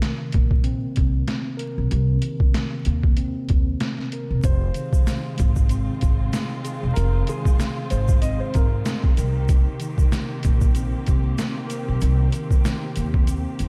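Gritty and reflective, this swung boom-bap hip-hop passage sets an up-front, compressed, pitched-down sampler-style drum kit with a thumpy kick and medium-tuned snare over a dark, woody pizzicato upright bass and a mellow, filtered tine electric piano, until at 4.4 s a vintage upright piano with audible action noise sings a short melody through diffuse ambient delay until 9.5 s, joined by a distant, bowed string section with vibrato and portamento and a grainy egg shaker in the background, all wrapped in small-room ambience and vinyl crackle.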